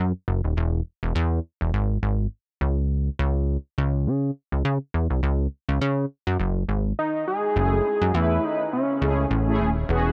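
Late-night and slick, this early-eighties boogie funk groove with swung sixteenths opens on a punchy, plucky analog bass, is joined at 7.0 s by a fat, detuned sawtooth lead carrying the melody through chorus and analog delay, and at 7.6 s by round, brassy synth brass with chorus and phaser as the harmony shifts to F#m9, set in a lightly reverberant room.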